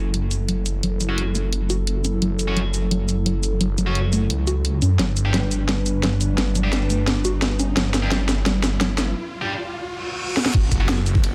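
Straight 4/4 dark technical drum and bass with a dark, aggressive mood, where an up-front kit with a cracking snare sits alongside a swirling, thick phased saw bass beneath a deep, moody analog pad, a warbling lo-fi pluck arpeggio sitting in the background and bright, double-tracked distorted guitar stabs, while a riser builds from 3.2 seconds through a drum fill and a break into a reverse cymbal and impact at 10.5 seconds, where a knocking electronic kick and a very quiet, gritty breakbeat kit join as the harmony returns from G to F#m7 in this short cut from a longer piece.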